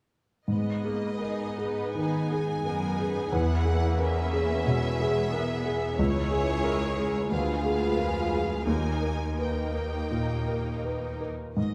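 From 0.5 s, a brooding, passionate classical passage in G# minor unfolds at a rubato 77-92 BPM: an intimate concert grand piano sits up front with audible action noise and deep bass, sharing the melody with a distant, intense violin section, while a second violin section with a smooth top, a rich, even viola section and a focused cello section in the background supply the second line, accompaniment and bass, the lush strings bowed with vibrato in a wet recital hall reverb.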